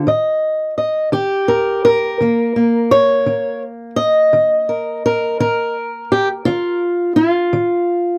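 A fingerpicked acoustic guitar sits up front in this short cut from a longer acoustic country blues piece, its dark, boxy tone moving through a swing-style part that spans Eb3 to Eb5 and opens on an Eb chord. The mood is soulful and laid-back, unhurried at 56 beats per minute in 12/8, with the guitar tuned slightly below standard pitch. Close, detailed microphones catch the playing within a moderate booth ambience.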